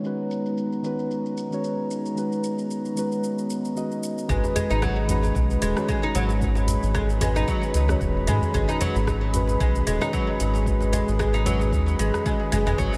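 A dreamy, reverb-soaked mix with a long cathedral tail and a low-pass filter gives this fragment from a longer organic downtempo piece an earthy, hypnotic haze. It opens on muted, felt-like synth keys with chorus and delay, a smooth, warbling vintage pad with chorus under a filter sweep, and a deep house kit with metallic, overdriven hats, rim click and shaker, all holding on a single minor chord with a gentle swing. At 4.3 seconds the groove fills out: a plectrum-plucked, woody oud with doubled strings spins delayed arpeggios, a round, dark analog bass sits up front with evolving ring-modulated depth, and a punchy, overdriven electronic kick thumps in the background. A very quiet, tight djembe with cracking tone and metal rattles joins almost at once. The keys and pad both pump with sidechain, and the layers run together until the cut at 13.0 seconds.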